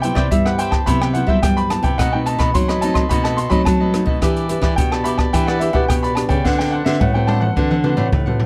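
A clear baby grand piano carries the melody in this festive, sunny samba and choro passage, its intimate, natural tone ringing with long sustain and audible action noise. Underneath, a cavaquinho adds crisp picked accompaniment, while one nylon-string guitar fingerpicks full-bodied classical chords and a second, thumb-plucked guitar supplies the bass line. An open jazz drum kit sits up front in a studio room, pairing a high-tuned snare and boomy kick with hi-hat, rim clicks and toms, and it plays a fill from 6.5 seconds to the end. The feel is straight at 108 BPM in 4/4, moving through Cmaj7#11, B7b9, Em7 and D6. Light reverb and a dark, warm production frame this short passage, cut from a longer piece.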